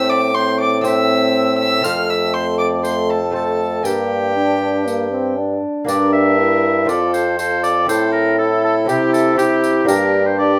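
A clear, up-front oboe carries the melody of this solemn, courtly renaissance-style consort dance in G dorian at 120 BPM. From the start it is joined by a gut-string violin on a second line, a bright, fingerpicked lute in the background, a distant, roomy trombone, and a mellow, punchy bassoon with light vibrato holding the bass. A jingly, compressed tambourine enters at 0.8 seconds, and a moderate stone-room reverb surrounds the consort as the harmony moves among Am, F, Gm and C in this passage cut from a longer piece.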